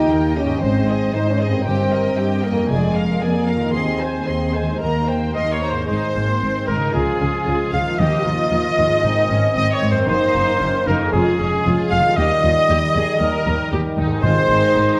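Heroic and adventurous, this cinematic orchestral passage, cut from a longer piece, sets a lush, smooth violin melody over a second violin line in the background, rich violas, dark cellos, woody double basses and ringing harp arpeggios, while mellow French horn chords up front give way at 5.3 s to a clear oboe line, soon joined by very quiet trumpet stabs and bright, punchy trombone chords, with very quiet, dry timpani accents from 8.0 s, inside a wet scoring-stage reverb.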